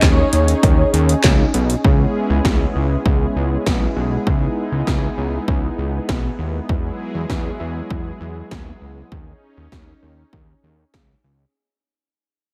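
Synth-pop at 99 BPM in C# minor with a nocturnal, cool mood, cut from a longer piece: a mellow, round synth brass sounds a brief C#5 melody in the background with chorus and diffuse ambient delay until 1.5 seconds, while a bold, warbling brassy analog pad with chorus sustains chords, a fat, detuned sawtooth bass sits up front, and overdriven 80s electronic drums drive with a punchy kick, gated snare, metallic hi-hats and handclaps, all under light reverb as the harmony moves from G#sus4/D# through C#m7 and Eadd9 and back to G#sus4/D#, with a fade-out beginning at 1.8 seconds.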